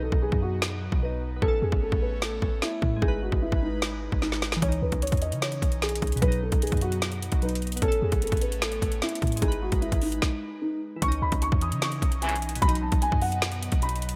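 A felt-muted upright piano carries the melody in this dark, melancholic trap excerpt, its thick-felted tone soft, boxy and intimate, softened further by a low-pass filter and trailed by a digital delay. Beneath it, glassy digital keys sit in the background with chorus, phaser and a filter sweep, while an airy, breathy pad, detuned and layered with noise, holds sustained chords that bloom slowly and linger. A clean, deep 808-style bass gives a boomy, sine-like low end with a fast attack and decaying notes, and an up-front trap kit with a hard-clipped kick, woody snare and metallic hats drives a half-time feel. The opening break gives way at 4.6 seconds after a short drum fill, the music stops briefly at 10.2 seconds, and a tight, classical-style brass ensemble punches a single bright stab at 12.2 seconds. The harmony circles through minor and added-ninth colours, wrapped in light reverb and digital ambience for a polished, 1980s-style digital sheen.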